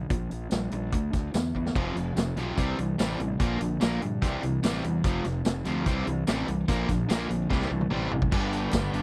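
Classic rock with a driving, sunny feel, this dry, close 1970s-style excerpt opens on a crunchy overdriven guitar riff over growly, fuzz-drenched fingered bass and a gritty, up-front vintage kit with dark cymbals and tambourine, a second cranked stack guitar joins the riff in the background at 1.8 seconds as chords move through F5, C and Bb, and after a drum fill a bright, shouting tonewheel organ on slow rotary enters very quietly at 8.3 seconds with a brief, crisp group handclap just after.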